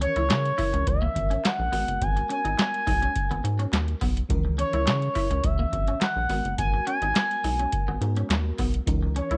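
Digital ambience capped below 10.5 kHz wraps this slick, danceable early-eighties boogie funk excerpt at 105 BPM in C# dorian, where an up-front, booming analog drum machine with deep kick, tonal snare, metallic hats and handclaps sits alongside a rubbery, bouncy square bass, while a smooth, expressive sawtooth lead carries the melody with vibrato, chorus and slapback echo over a lush, dreamy FM electric piano with a soft pad layer and a twangy, clean picked guitar riff with ensemble chorus, all circling between C#m69 and G#m9.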